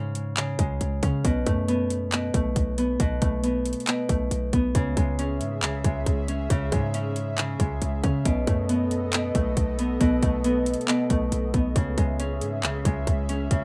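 Brooding and eerie, this short half-time trap cut in C# minor moves at 137 BPM, drawn from a longer piece. A fingerpicked Celtic harp rings out arpeggios up front from the start, its acoustic tone touched by delay and plate reverb, while a punchy 808-style bass with a fast attack and decaying sine body underpins it. The trap kit arrives at 0.2 seconds with a hard-clipped kick, metallic hi-hats and handclaps sitting forward in the mix. At 4.9 seconds a breathy, nasal pad of detuned sawtooth and triangle tones fades in slowly with chorus and plate reverb, holding soft sustained chords above the harp. The harmony shifts between C# minor and B7, and the whole has the rough, lightly reverberant feel of a home demo.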